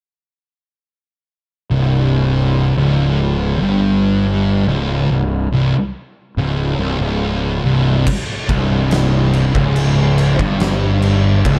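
Sludgy and hypnotic, this slow stoner and doom metal fragment, cut from a longer piece, opens on two thick fuzz guitars playing a low C5 riff, one dark and up front and the other sitting in the background, over a growly, overdriven fingered bass pushed to the front. At 8.1 seconds an oversized low-tuned acoustic kit crashes in with a fat snare and punchy kick in a big, pumping room, and a very quiet, double-tracked crunchy overdriven guitar joins the riff at 8.5 seconds. The production is dark and warm, with small room ambience and a gritty, saturated drum sound.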